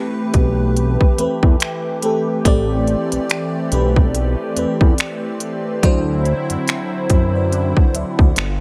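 Trap drums with finger snaps, crisp hi-hat and a hard-clipped kick arrive at 0.3 s alongside a fat, saturated sawtooth analog bass, joining a dreamy FM electric piano layered with a soft pad and an airy, bright unison pad, both treated with chorus and phaser, as this moody, late-night contemporary R&B excerpt moves from Am9 to D9 at 5.8 s within a digital ambience.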